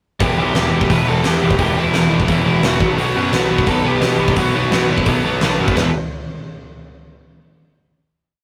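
Punk rock at 172 BPM in E minor, urgent and raw, with a big acoustic drum kit hammering out a fast punk groove with a fat snare and punchy kick, while a double-tracked, scooped distorted guitar drives eighth-note power chords from Em to Bm at 2.8 seconds. A fuzz-growly picked bass pushes steady eighth notes underneath, and a lead guitar through a small cranked amp plays hook phrases, partly doubled in octaves. The short piece has the rough feel of a rehearsal-room recording in a moderate booth, and the verse gives way at 5.8 seconds to a final E5 chord that rings until 7.1 seconds.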